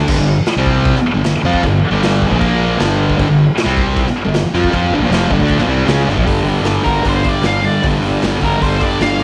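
Cut from a longer piece and captured at home on cassette in a small room, this gritty, raw garage rock runs at 155 BPM in G minor. A bright, double-tracked distorted guitar riff sits up front, backed by a dark, round overdriven fingered bass and a punchy, saturated drum kit of kick, medium-tuned snare, hi-hat and crash in a pumping stone room, cycling through chords on G, C and Bb. At 6.8 s a darker octave-fuzz lead guitar with a cassette-tape grain enters for the closing stretch.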